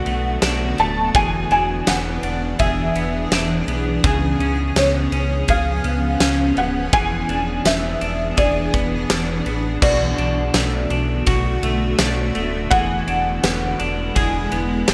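Ethereal and melancholic, this dream pop excerpt moves at 83 BPM in a straight 4/4, with a soft, felt-muted upright piano carrying the melody, its dark, intimate tone and audible action noise dressed in ensemble chorus and digital delay. Beneath it, a blurred, evolving granular cloud pad holds sustained chords, a clean picked electric guitar plays arpeggios through analog chorus and delay, and a deep sine sub bass with octave anchors the low end, while a huge arena drum kit with a fat snare and punchy kick sits up front from 0.1 seconds. Chords cycle through Bm7, E7 and C#7 under a moderate plate reverb and a bright 1980s-style digital production, with a new section arriving at 9.8 seconds.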